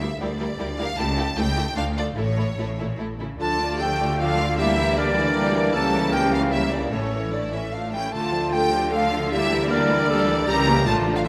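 Classical and dramatic, this fast romantic orchestral movement in D minor surges at 153 BPM in 3/4 with a rubato, urgent feel. Lush bowed strings carry it from the start: vibrato-rich violins sing the melody above a focused second violin line, with the viola section, distant cellos and expressive double basses filling out the accompaniment and bass. At 3.4 seconds a mellow solo clarinet and an airy, crisp-attacked flute join with second lines while the French horn section and a very quiet, roomy trombone section add sustained chords, all set in a moderate scoring-stage reverb.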